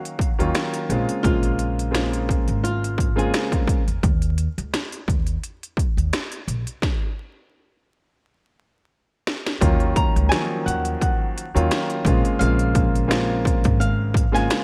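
This dark, reflective boom-bap hip-hop excerpt opens on a mellow, woody upright piano with a cassette-tape tint, playing Ebm9 and Bbm9 chords at 86 BPM with a lightly swung 16th feel in Bb minor. A layered electronic drum kit enters almost at once, up front with a heavy kick, cracking snare, rim click and smooth hats wrapped in gated reverb. Beneath it, a thumpy pizzicato upright bass on steel strings holds the low end, and a fingerpicked flamenco guitar adds a filtered melodic line with digital delay. Just before 4.0 seconds the piano and guitar fall away, and at 4.0 seconds the harmony drops out for a break. A stop arrives at 6.8 seconds before a drum fill leads into the second section at 9.6 seconds, where piano and guitar return over the same chord pair. The mix carries a bright 1980s-style digital sheen, vinyl crackle and a small-room ambience.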